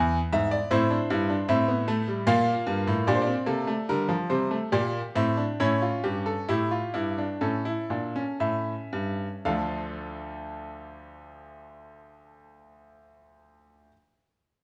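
Serious and driving, this baroque-style four-part fugue for solo grand piano, cut from a longer piece, features a clear, smooth, vintage-toned instrument with short sustain placed up front by close, detailed microphones in a moderate recital hall reverb, slowing down from 0.7 to 9.4 seconds before settling on a D minor chord.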